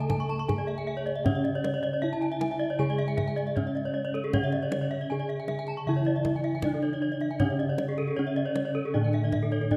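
This Balinese gamelan passage, cut from a longer piece, opens at once with bronze metallophones and bossed gongs together, and the mood is shimmering and brilliant. The lead metallophone carries the melody with a ringing, mid-forward tone from its wooden mallet. A lower metallophone, also struck with wood, plays accompaniment beneath it. Both are tuned in pairs so their notes beat and glimmer. The bossed gongs hold the bass with a round, beating bronze voice. Two more metallophones play arpeggios struck with horn mallets: the higher-reaching one sounds boxy, as if in a small room, and warm, while the one entering at 0.1 seconds is bright, close-miked, dry and full. The kendang also joins at 0.1 seconds, deep and close under hard hands, and a moderate concert-hall reverb surrounds the ensemble until it breaks off at 9.8 seconds.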